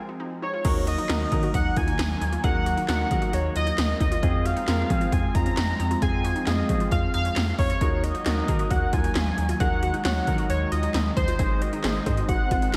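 A bold, ring-modulated octave-doubled lead with chorus and tape echo carries the melody in this melancholic, nocturnal synth-pop piece in Eb dorian at 134 BPM, over a clear baby grand piano, a swirling phased analog pad and a detuned analog pluck playing arpeggios in the background, while from 0.6 s a deep, round analog bass and up-front 80s electronic pad drums with a punchy kick and gated snare join, the whole mix sitting in a lush hall reverb that gives it a big arena sound.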